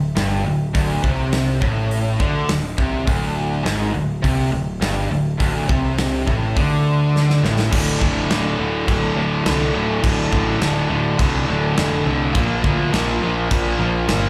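A driving, straight 4/4 pulse at 104 BPM powers this aggressive hard rock excerpt in D minor, cut from a longer piece and heard live through a club PA with small-room ambience and light reverb. Two guitars share the riff across the same low register, one overdriven semi-hollow guitar with a hollow-body glow and one bright, tight distorted guitar pushed up front, both carrying slapback echo, while a growling, round, punchy picked bass with overdrive sits beneath them. A gated 80s kit with bright cymbals, a medium-tuned snare and a tight kick plays from 0.2 seconds, and its fill at 7.1 seconds leads into a second section where the harmony moves from a D power chord to Bb at 12.3 seconds.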